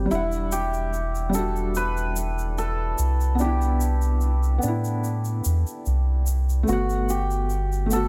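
A studio reverb hangs over this smoky, melancholic trip hop excerpt in E minor, tuned to A4 = 437 Hz and moving at a slow 73 BPM with a light swing on the sixteenths. A deep, round dub sub bass sits up front beside a felt-muted upright piano, dark and intimate with tremolo and tape echo. At 0.1 s a shimmering hammered dulcimer melody, also carrying tape echo, and an acoustic egg shaker with a small-room sound join them, while the harmony drifts from Em7 to Cmaj7 at 3.4 s and Gmaj7 at 6.7 s.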